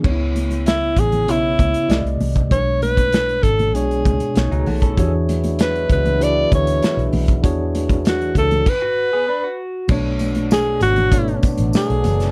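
Cinematic and smooth, this excerpt from a lush 1970s-style soul piece rides on clean tine electric piano chords, a dark, round, foam-muted fingered bass, a punchy up-front studio drum kit and damped, high-tuned congas in the background. A breathy, whispered alto saxophone carries the intimate jazz-style melody up front, while a lo-fi, slightly broken-up electric guitar with phaser adds brief riffs from 4.5 seconds and a mellow French horn section holds soft, vintage chords in the background from 5.0 seconds. After a short stop, a jingly, close and dry tambourine joins at 9.9 seconds as the harmony settles onto Bm9.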